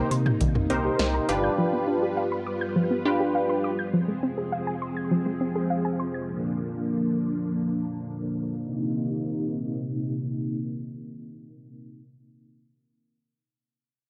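A driving, melancholic synth-pop excerpt in C minor at 102 BPM opens under a filter sweep with a punchy, detuned sawtooth polysynth comp, full vintage string-machine cellos, soft, round arpeggiated plucks trailing analog delay, and a glossy chorused synth bass, while an electro analog drum machine with a deep kick, metallic hats and 12-bit sampler grit joins at 0.1 s. Bass and drums fall away by 1.5 s, then the comp and the dark, warbling plucks stop in turn, leaving the mellow cellos to sustain the Bb chord and the return to Cm7 alone until 11.8 s. The sound is dry and gritty, like a hardware recording, touched with light digital ambience.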